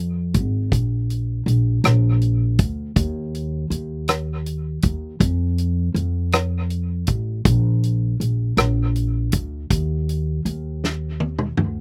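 An upright bass opens this hopeful, uplifting slow gospel excerpt in 6/8 at 53 BPM, its woody, thumpy pizzicato tone sitting up front in a low register, and a natural country drum kit joins at 0.3 seconds with a punchy kick, a medium-tuned snare, rim clicks, hi-hat and toms. The drums carry a small-room acoustic character, while the overall sound is dry and close, with little reverb. A drum fill from 10.8 seconds carries the passage to its end at 11.8 seconds.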